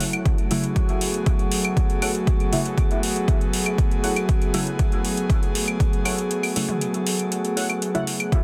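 Meditative and hypnotic, this dub techno excerpt moves at 119 BPM in F# minor, resting on a single F#m7 chord as an airy, breathy pad sits up front with sustained chords, pumping under sidechain with chorus, while a metallic, inharmonic FM drone hovers eerily in the background with its own reverb. A punchy, dry, overdriven kick drives the groove alongside layered metallic hi-hats and distant overdriven claves and toms trailing dub echo, and a deep, mellow chord stab with phaser and echo joins at 0.5 s beside warbly, lo-fi, nostalgic synth keys playing a riff in the background. The kick drops out from 6.3 s to 8.3 s, while the other parts carry the dense, heavily limited mix through its digital ambience.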